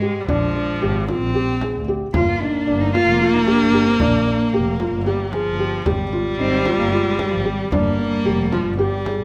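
Contemporary chamber music in a straight 7/8 at 226 BPM (eighths), in G phrygian tuned to A4 = 437 Hz, with a pensive yet urgent mood as the chords move through Bb7, Gm7, Ab5 and back to Gm7. A rich bowed cello carries the melody with vibrato while an up-front viola sings a second line with expressive portamento, over mellow arpeggios from a felt-muted upright piano and a dark, smooth bowed double bass. A deep frame drum played with hard hands enters at 0.3 seconds, sitting close and dry in the background, while the strings and piano are set in a moderate recital hall reverb.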